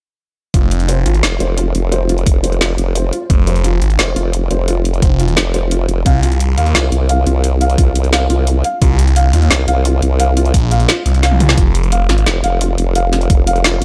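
A swirling, thick, detuned sawtooth bass with a saturated phaser edge sits up front in this dark technical drum and bass cut, arriving in short bursts across the passage. Alongside it, from 1.2 s, a formant-filtered wobble bass keeps up a compressed, chorused growl that gives the track its mechanical, tense pull at 174 BPM in straight 4/4, in F minor. Overdriven, layered electronic drums drive the groove, pairing a knocking kick with a woody snare, bright hats and toms, and a drum fill lands at 11.2 s. Far back in the mix, a felt-muted upright piano plays soft, mellow arpeggios with short sustain and audible action noise, coloured by vintage 12-bit sampler grit, sidechain pumping and a diffuse ambient delay. Light reverb and a digital ambience frame this intimate keyboard against the heavy low end.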